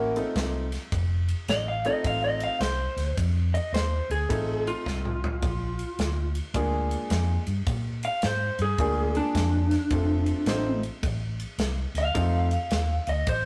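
An electric guitar through a small old amp plays a second line in this rollicking, swaggering electric blues shuffle, entering at 1.5 s with a slightly broken-up, picked, compressed part that sits up front with a lo-fi edge. Beneath it, a clear, woody upright piano fills in the accompaniment, while a vintage muted fingered electric bass supplies a dark, round foundation. A natural country drum kit swings along on kick, snare, ride cymbal and toms, its airy, polished sound carrying a punchy kick and a medium-tuned snare, and it rolls into a brief fill from 4.9 s to 5.4 s. The harmony moves from F7 to Bb7 and back to F7, and the whole passage is cut from a longer piece. The rough rehearsal-room recording adds warm saturation and a moderate stone room reverb that gives the band a lived-in, gritty feel.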